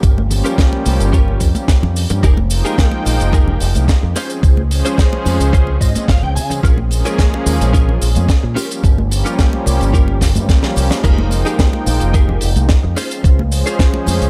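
A dry, close-sounding nu-disco cut with a sleek, cosmic mood, built on a thumpy sampled kick and a bright, punchy fingered electric bass through an envelope filter with sidechain pumping, both up front, while a tight funk kit with a high-tuned snare, background tambourine and hard-hand congas, a clean, compressed guitar riff with chorus and delay that adds a fill at 5.5 seconds, and a smooth, warbling detuned analog pad that enters at 0.3 seconds fill out the groove, with a drum fill at 10.2 seconds.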